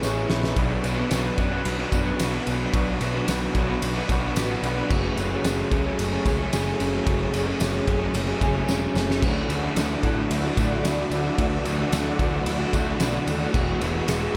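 A loose indie drum fill with a fat snare and dark cymbals opens this hazy, dreamy shoegaze excerpt, where an overdriven semi-hollow guitar riff with ensemble chorus, a slightly broken-up lo-fi guitar riff through a small old amp with reverse reverb, a round fuzz bass, a shimmering, very quiet fingerpicked twelve-string acoustic arpeggio and a distant jingly tambourine are bathed in lush hall reverb, while a warbling vintage string-machine cello pad sounds briefly at the start and returns at 9.2 seconds as the chords move from Bm and F#madd9 to Dadd9 and Eadd9.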